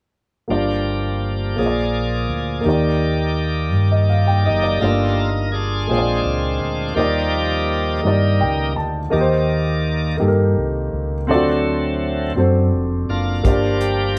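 A woody upright piano with audible action noise, a round, punchy fingered electric bass and a bright, shouting tonewheel organ through a fast rotary speaker and light overdrive open this fragment of slow gospel in G minor, moving at 56 BPM in a straight 6/8 with a fervent, solemn mood. From 4.8 seconds the up-front organ takes a solo over the Gm7, Bb7 and Ebmaj7 changes, and the intimate piano adds a fill at 8.1 seconds, just before the harmony moves through Cm7/Eb and D7. A dry, dark soul drum kit with a tight kick and hi-hat enters only at 13.4 seconds on the return to Gm7, and the band plays live together in one room with moderate studio reverb.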